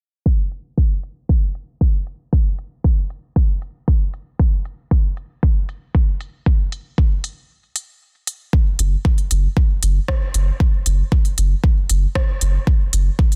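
A dense, heavily limited, low-pass-filtered mix carries this hypnotic, nocturnal dub techno cut at 116 BPM in a straight 4/4, with a deep, layered electronic kick up front beside a deep house kit of smooth hi-hats and rim clicks, a filter sweep running through the opening section until a break at 7.5 seconds, and a round, soft sub bass on F#1 with sidechain pumping entering at 8.8 seconds.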